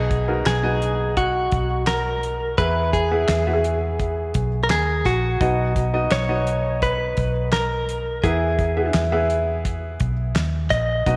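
A steady, straight 4/4 groove drives this uplifting, piano-led pop clip cut from a longer piece, with a damped 70s drum kit entering at 0.1 s on kick, snare, hi-hat and handclaps. The kit sounds dry and dark, with a fat snare, tight kick and rolled-off top, while a vintage fingered electric bass, foam-muted, round and amped, sits up front in the low register. A bright upright piano carries the accompaniment with a woody, brilliant, polished tone, its short sustain and audible action noise giving it an intimate presence. Over this, a clean, direct-recorded electric guitar plays the melody with a picked, compressed, warm sound washed in spring reverb. The harmony alternates between B and E, and a moderate echo-chamber reverb lends the whole mix a gentle sense of space.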